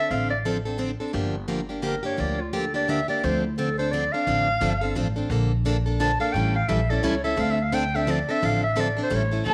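A breathy clarinet takes the solo from the start in this short cut from a longer piece of acoustic string swing in the jazz manouche style, its subtone playing close-miked and up front, with vibrato and scooped notes ranging from C4 to A5. Set at 173 BPM in 3/4 with a swung eighth-note feel in D minor, the music comes across as virtuosic and swinging. Beneath it, a picked plugged-in steel-string acoustic guitar supplies a bright accompaniment with audible finger squeak, while an upright bass joins at 0.1 seconds with dark, woody, thumpy pizzicato on gut strings. The harmony moves through Dm7, Gm7, Bbmaj7 and A7, returns to Dm7 and closes on A7, and a warm bowed violin appears only at 9.5 seconds on a single A4, with a soft attack and a smooth top. A moderate echo chamber reverb and small room ambience give the group a close, moderately reverberant space.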